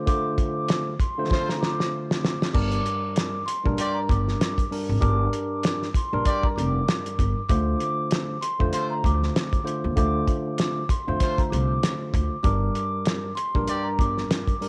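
Boom-bap hip-hop at 97 BPM in G minor with a reflective, moody swing, cut from a longer piece: a cloth-damped, thuddy drum kit with a fat snare and dark cymbals sits up front beside a clean tine electric piano, while a close-miked, ringing vibraphone carries the high melody through analog delay. A distant, punchy trumpet section adds stabs from 1.3 seconds, and a woody pizzicato upright bass with tube saturation enters at 2.5 seconds, with the vibraphone, piano, drums and trumpets tinted by cassette tape inside a small room ambience.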